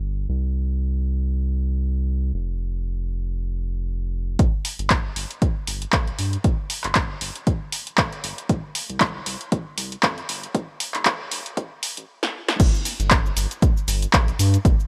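A round, dark analog bass opens this moody deep house excerpt in G minor at 117 BPM, sitting up front with tube saturation and sidechain pumping, and it plays alone until 4.4 seconds. Then a punchy electronic kick and a tape-toned analog drum machine enter, adding snare, handclaps, hi-hat, shaker and crash with a short room on the snare, clap and hats. A filter-swept build-up follows, a drum fill arrives at 12.2 seconds, and the drop lands at 12.6 seconds, all in a dry, high-passed mix.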